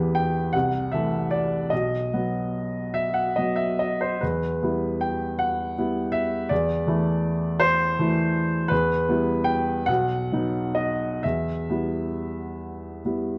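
Wistful and yearning, this fragment of a romantic classical nocturne unfolds in a rubato 12/8 sway on a solo baby grand piano whose open, long-sustaining tone sits up front, captured by close, detailed microphones within a moderate recital hall reverb as the harmony drifts between tonic, subdominant and dominant chords.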